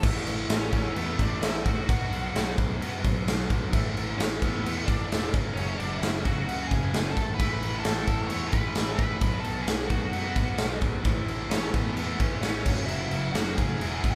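An anthemic, restless stretch of quiet-loud alternative rock opens with a big acoustic drum kit up front, its punchy kick, crash cymbal and medium-tuned snare ringing in a bright stone room. Beneath it sit a picked, distorted electric guitar riff, a very quiet thick fuzz guitar riff and a growling, overdriven fingered bass. At 0.5 seconds a dark octave-fuzz lead guitar enters with the melody over chords moving through A5, B5, Asus2 and F#5, and the band sounds as if it is playing live together in one room with light reverb.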